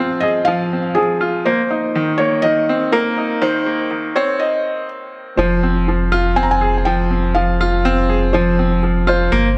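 At a straight 122 BPM in 4/4, this hypnotic, intimate piano and strings electronica excerpt in F minor pairs a soft, felt-muted upright piano melody with audible action noise and delay against a clear, up-front baby grand riff with short sustain, over a round, deep analog bass, moving from a build-up with a break at 4.4 seconds into a drop at 5.4 seconds in a moderate concert hall reverb.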